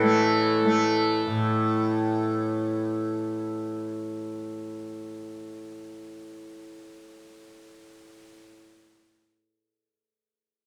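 Meditative and radiant, this short passage of Hindustani classical music, cut from a longer piece, unfolds in free time. A bright, softly plucked tanpura sits up front, its buzzing drone running from the start to 8.4 seconds in the low register. Over it, a hammered santur offers a mellow, ringing melody confined to a narrow upper range, sounding only until 3.3 seconds before the tanpura carries on alone. Both instruments share a shimmering quality. The sound is set in a large studio with a wet, generous reverb.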